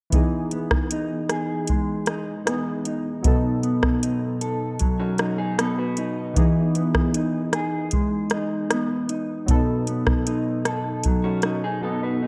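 A mellow electric guitar, dark, clean and fingered with a lush chorus and vibrato effect, opens alongside a soft vintage rhythm box and warbly lo-fi synth keys, setting a hazy, dreamy bedroom-pop mood at 77 BPM in a straight 4/4. The rhythm box sits up front with a dry, tape-tinged analog sound: a deep kick, metallic hi-hats and rim clicks. Behind it, the synth keys drift in the background, nostalgic and detuned, blending pulse, sawtooth and sine tones with a sub octave, a filter sweep, fast attack and decaying notes under chorus. The E major harmony moves between Emaj7 and B7. A second electric guitar through a small old amp, slightly broken-up, picked and compressed with subtle chorus and digital delay, adds a brief line at 5.0 seconds and again at 11.2 seconds. Light reverb and a rough home-demo mix give this indie pop fragment, cut from a longer piece, its casual feel.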